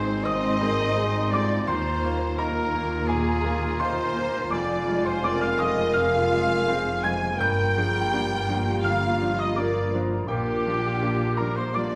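Moving and hopeful, this rubato cinematic passage at 84 BPM in 4/4 carries its melody on a lush, distant violin section over a brilliant baby grand piano, while a clear solo oboe, a soft-attack background violin section, a very quiet clarinet and an airy, hollow flute add second lines. A smooth viola section fills out the accompaniment and a dark, roomy French horn section supplies sustained chords. Cello and double bass sections anchor the low end through chords moving from Ab to Bb6, and a wet concert hall reverb surrounds the sound.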